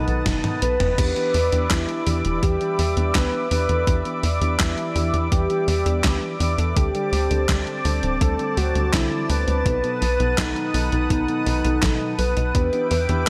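A digital ambience and light reverb frame this nocturnal, moody synthwave excerpt in E minor at 83 BPM, which opens on a drum fill from the gated 80s drum machine, with its gated-reverb snare, handclaps, hi-hat, toms and crash, before a thumpy, tape-warm electronic kick arrives at 0.3 seconds. A tight, punchy sawtooth sequencer bass sits dark and up front beneath a lush, warbling unison pad with sidechain pumping, while a round FM electric piano adds soft, phased stabs over the progression from B7 through Em7 and D7sus4. On top, a mellow octave-layered lead carries the melody with vibrato, chorus, tape echo and shimmer reverb.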